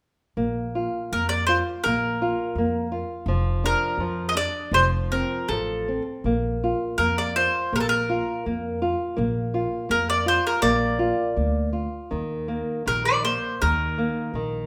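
The rhythm moves in a loose, rubato 2/4 at about 82 BPM, giving this tender, nostalgic fado-style ballad in Bb major a gently unhurried sway. A fingerpicked nylon-string guitar and a pizzicato upright bass begin together at 0.4 s. The guitar is dark and small-sounding, sitting up front in a modest middle register, while the steel-strung bass adds a woody low line underneath. At 1.1 s a picked mandolin takes the melody, its doubled strings giving a round, warm voice that stands forward of the other parts in a compact upper range. The harmony moves from Bb5 through Bb/F, F and Bb before settling on Eb5 near the close. A moderate recital-hall reverb wraps the trio in a natural sense of space, and the passage, cut from a longer piece, runs on to 14.7 s.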